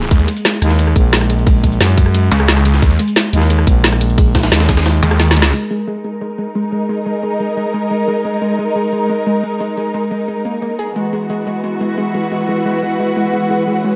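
A tight, up-front electronic kick drives this dark technical drum and bass at 177 BPM in straight 4/4, with a layered kit of woody snare, bright hats, cabasa and rim click running throughout, while a gritty, pitched-up jungle sampler-style kit with a high-tuned snare and ride cymbal sits overdriven in the background for the first 5.5 seconds. Over this, a soft, round pluck spins arpeggios in G# minor through lush chorus, dub echo and sidechain pumping, under a filter sweep, and the low end is shared between a snarling distorted saw bass in short bursts and a thick, growling FM bass with tube saturation. The kick drops out just before a drum fill and a band accent at 5.4 seconds mark the turn into the second section. From 5.5 seconds a dark, bowed studio string section takes up sustained chords with vibrato and a smooth top, pumping and filtered under a sweep, and an ethereal, airy pad with a slow attack and long release joins at 6.4 seconds. 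The mood is tense and futuristic, set in light digital ambience, and the excerpt is cut from a longer piece.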